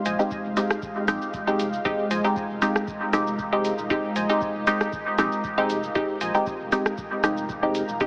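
Meditative and nocturnal, this dub techno excerpt moves at 117 BPM in 4/4 with a light swing on the sixteenths, resting on a single Fm7 chord in F minor. Up front, a muted, mellow sawtooth chord stab with a filter pluck and short decay is coloured by chorus, phaser, sidechain pumping and dub echo, while a dark, slowly blooming analog pad of detuned sawtooth and triangle tones holds evolving sustained chords behind it with chorus and pumping. Further back, a crisp, digital wavetable stab built from detuned unison voices plays a riff with dub echo until 6.3 seconds, and a smooth, clean sine sub bass sits low and pumps in the background. A booming analog drum machine supplies metallic hi-hats, rim clicks and shaker through dub echo, joined at 0.3 seconds by a dry, tape-warm electronic kick tucked into the background. The whole mix swims in a huge ambient reverb with a 4.9-second tail and is squeezed into a heavily compressed, AM-radio-like sound flecked with vinyl crackle.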